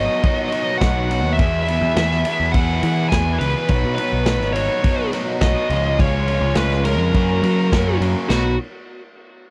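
This short excerpt has a dry, close sound, like a 1970s studio, giving an indie rock track a carefree, upbeat lift. A growling bass sits up front, overdriven and bright. Underneath it, a compressed, bright overdriven electric guitar plays a picked riff. A second riff guitar, heard through a small old amp, stays in the background with a slightly broken-up, shadowy tone and a touch of analog chorus. Over them, a bluesy lead guitar carries the melody in a dark, distorted voice trailed by tape echo. The vintage drum kit comes in at 0.2 seconds with a punchy kick, a medium-tuned snare, and dark ride and china cymbals with a rolled-off top. The harmony moves from Badd9 to E, returns to Badd9, then passes through C# and F# before settling back on Badd9 as a new section begins at 8.3 seconds.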